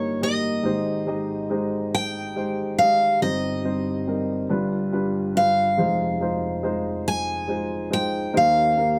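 Intimate and reflective, this brief acoustic folk-pop ballad moves slowly at 47 BPM, counted in dotted quarters within a straight 6/8, and it is cut from a longer piece. A picked steel-string acoustic guitar carries the melody from start to finish, its fresh strings and dreadnought body giving the line a warm presence between Db5 and Ab5. Beneath it, a dark upright piano supplies the accompaniment across a broad span from F1 to Eb5, its tone mellow and woody with long sustain. Both instruments sit up front, captured by close, detailed microphones with a light reverb around them. The harmony drifts from Eb7/G through Abmaj7, Cm/G and G7 to Fm7, settling on Eb6 at 8.3 seconds.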